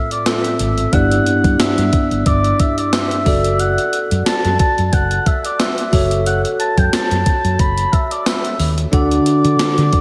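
1980s-style pop in D major at 90 BPM with a light sixteenth-note swing, this romantic, glossy excerpt cut from a longer piece sets a mellow, distant oboe melody with light vibrato, tape echo and slapback echo over a bell-like tine electric piano with analog chorus, while a thumpy, sampler-style digital drum machine with gated reverb snare, hi-hat and tambourine enters at 0.1 seconds and a dark, round hollow-body fingered bass joins at 0.6 seconds, all bathed in a lush hall reverb for a big arena sound as the chords move from F/A through G6, D/F# and F#m to D.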